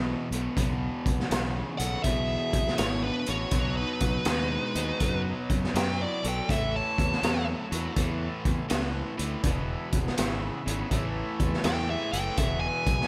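Lightly reverberant studio ambience frames this raunchy, driving excerpt of blues rock and southern rock in E major, swinging at 81 BPM in 4/4, where a bright, double-tracked stack guitar riff with slapback echo rides over a growling overdriven fingered bass and an up-front garage kit with a boomy kick, high-tuned snare and gritty, rolled-off top. At 1.8 s a smooth, picked lead guitar with digital delay takes the melody up front, joined by a dark, distorted second lead sitting in the background. From 3.5 s a thick overdriven tonewheel organ adds sustained chords through a slow rotary speaker, with an organ fill from 7.2 s, as the harmony moves from E5 through B and A back to E.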